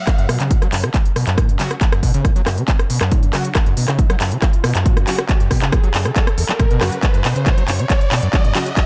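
An overdriven acid bass drives this relentless peak-time techno excerpt at 138 BPM in F# minor, its squelchy, resonant sawtooth riff gritty with distortion, subtle chorus, digital delay and sidechain pumping as it ranges from E2 to F#3. A heavy, up-front electronic kick and an overdriven drum kit of handclaps, smooth pumping hi-hats and rim clicks carry a drum fill through the whole build-up, while a riser sits in the background. From 1.6 seconds, punchy detuned supersaw stabs with a moving notch and digital delay pump between C#3 and F#4 over a dry, forceful mix.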